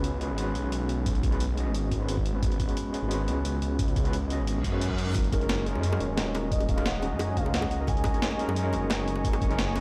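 Soulful and rolling, this short cut of liquid drum and bass moves at 176 BPM in a straight 4/4. A barky, overdriven tine electric piano with medium tremolo, a low-pass filter and dub echo sits over a menacing, saturated detuned saw bass up front, while a gritty, tape-warm breakbeat kit of hi-hat and snare runs throughout and a thumpy compressed electronic kick joins at 1.1 s. After a reverse cymbal at 4.6 s, the harmony moves from C#7sus4 to F#69 as a warbling vintage analog pad with chorus, a velvety, mellow lead with chorus, delay and portamento tucked in the background, and very quiet, close and dry high-tuned bongos arrive, all set in the large reverb of a bare room played through a big sound system.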